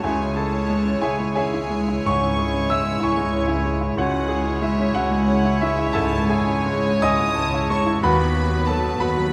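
An up-front, clear baby grand piano carries the melody through this lyrical, passionate classical excerpt in C# minor, moving in a rubato 12/8 at 53-64 BPM, with a rich, floating chamber violin section also sharing the melody; behind them, a clear oboe, a smooth-topped clarinet, a hollow, airy silver flute and a distant studio violin section weave second lines, while a very quiet, intimate viola section, a roomy, dark French horn section, a warm cello section and a dark double bass section support the harmony from C#m to B/D# at 8.0 seconds, all set in a wet scoring-stage reverb.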